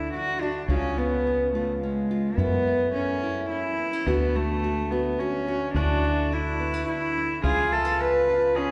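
This short passage, cut from a longer piece, moves in 3/4 at 107 BPM with a straight feel, an acoustic folk piece for a small band with a hopeful, warm mood. A single bowed cello carries the melody up front, played sul tasto with a soft attack, so its pure, floating tone sits smooth on top. Underneath, a classical nylon-string guitar is fingerpicked with a bright edge, while a foam-muted fingered electric bass adds a dark, round, punchy foundation in its low register until 8.5 seconds. At 5.8 seconds a clean, compressed pedal steel guitar enters in the background, played with fingerpicks and slide, its twangy volume swells adding a second line. The chords move from D through C#7 and F#m7 back to D, then on to Dadd9 and C#7, and a lush concert hall reverb with a 2.3-second decay gives the recording a spacious, softened sound.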